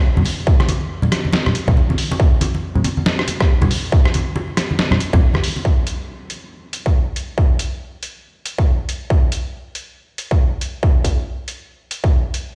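Bright, soft-handed congas open this heavy, meditative dubstep excerpt at 0.2 s, carrying a dub echo and the close feel of a small room. A sampler-style trip hop kit arrives almost at once with hi-hat, rim click and a medium-tuned snare that sounds compressed, pitched down and muffled, sitting in studio reverb. Beneath it, a layered, distorted electronic kick punches up front with its own studio reverb and drives the 139 BPM half-time groove in 4/4, swung at 60% on the 16ths. The passage begins on a drop that gives way to a short break at 5.2 s, and the congas fall away at 5.6 s, leaving the kick and sampled kit to carry the second half. The whole mix sounds as if played on a big sound system in a bare stone room, adding a light, hard-walled reverb around the drums.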